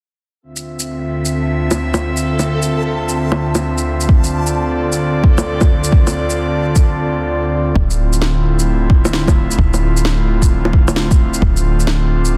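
Swung sixteenths in 4/4 drive this melancholic, ghostly future garage excerpt, where an airy, breathy pad holds a Dm7 chord up front with chorus and sidechain pumping, a reversed, detuned granular texture swells brightly in the background until 6.8 s, and overdriven electronic shaker, bongos and a woody snare run beneath, while a deep, layered kick enters up front at 4.1 s with a large-room sound, and after a short break a soft, round, dark 808-style bass arrives at 7.8 s, pumping under a dense, heavily limited master.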